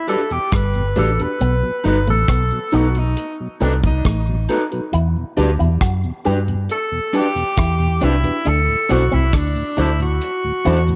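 A damped 70s drum kit with a tight kick, hi-hat and rim click sets a straight 68 BPM lovers rock reggae groove in E minor, while a slightly broken-up, lo-fi guitar through a small old amp plays stabs, and a soft FM electric piano with chorus and phaser and a slow-rotary tonewheel organ with dub echo sit in the background alongside a cabasa. At 0.5 s a round, punchy, foam-muted electric bass up front and a twangy envelope-filtered guitar riff join in, and a forceful, roomy alto saxophone with vibrato and tape echo carries a bittersweet, longing solo from the very start of this dark excerpt cut from a longer piece.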